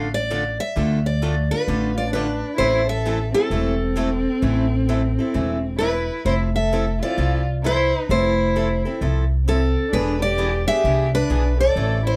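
A bright, picked steel-string concert guitar carries the melody up front in this bittersweet, virtuosic slice of jazz manouche, swinging at 131 BPM in A minor over a Dm, Am, Fmaj7 and E7#9 progression. A boxy parlour guitar with audible finger squeak provides the accompaniment, while a woody, thumpy upright bass on gut strings is plucked prominently beneath. From 1.9 seconds a single bowed violin adds a soft-edged second line with vibrato and portamento, all set in a dark, warm production with light reverb.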